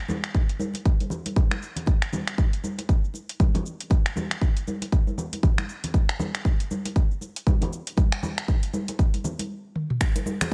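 Warm and earthy, this house groove swings its sixteenths in 4/4, built from an afro-pop drum kit of finger snaps, metallic hats, shaker and toms, softened by low-pass filtering and a small room ambience, alongside ringing, acoustic congas played with soft hands. An up-front, punchy electronic kick with a tape-warm, layered character enters at 0.3 seconds and sits loudest in the mix. Near the close the groove stops at 9.5 seconds, with a drum fill at 9.8 seconds in what is a cut from a longer piece.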